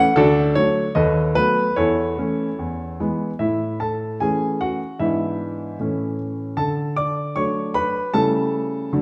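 Classical-period piano sonatina in a graceful, elegant mood, moving in a straight two-beat metre and taken from a longer piece. A solo baby grand carries the whole 9 seconds with a natural, up-front tone and short sustain, ranging from low bass to high treble. A generous recital-hall reverb and a dark, warm production frame the playing, with the opening phrase giving way to a second passage at 3.4 seconds.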